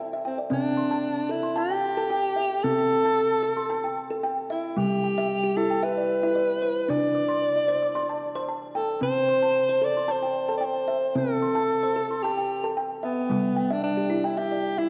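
World meditative music in C major at 113 BPM with a light sixteenth-note swing, calm and gentle, in which a woody, thumb-plucked kalimba lays down short, airy arpeggios from the start while a clear, close-miked alto saxophone enters at 0.3 seconds with a solo jazz-style melody full of vibrato, both placed up front and bathed in a church reverb as the chords drift from C through G/C and D5/C and back, in this fragment cut from a longer piece.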